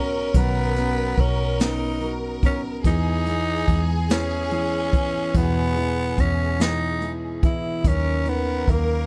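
Heartfelt and tender, this short passage from a longer six-eight pop ballad unfolds with a straight, unhurried feel. A growling tenor saxophone carries the melody up front, its raspy, jazz-style tone marked by light vibrato, scooped notes and a touch of delay. Behind it a bowed studio violin section sings a focused, rich second line, also treated with delay, while a concert grand piano with deep bass sits in the background and a full-bodied dreadnought acoustic guitar is fingerpicked very quietly in arpeggios. A vintage foam-muted electric bass gives a round, amped low end, and from 0.3 seconds a jazz kit played with brushes stands up front, with a high-tuned snare, boomy kick and hi-hat. The harmony moves from Badd9 to E at 2.8 seconds, all set in a small room with a dark, warm production.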